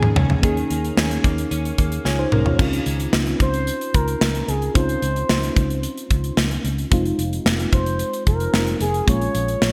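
Bright 1980s-style digital production sets this urgent, nostalgic pop excerpt in a lush hall reverb, with a polished, up-front drum kit carrying gated reverb and fills at the opening and around 2.1 seconds, while a dark, round, foam-muted electric bass anchors the low end. A soft FM electric piano with chorus plays throughout, and a clean, compressed, direct-recorded guitar riff with chorus and delay runs until 3.1 seconds. After a brief opening touch, a smooth synth lead built from sawtooth and triangle tones, with vibrato, chorus and delay, returns at 3.4 seconds to carry the expressive melody over chords moving from Eb7sus4 to Dbmaj9, Fm7 and Bbm7.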